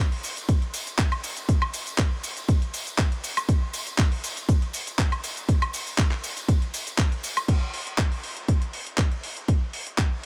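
A gritty, sampler-style soul drum kit opens this sunny, feel-good house cut at 0.1 s, its crash cymbal, handclaps, hi-hat, shaker and woodblock sitting up front with a compressed, tape-warm character and sidechain pumping on the hats, percussion and cymbals. A tambourine follows in the background, distant and acoustic in a large room, with the sound of a tube shaker and group handclap, low-pass filtered and pumping with the sidechain. At 0.5 s an electronic kick drum arrives, layered, punchy and overdriven, standing as the loudest element at the front of the mix. The groove holds a straight 4/4 at 120 BPM, with the opening stretch playing as a drop before the arrangement moves into a new section at 7.5 s. Light reverb and a digital ambience surround the parts, and the clip is taken from a longer piece.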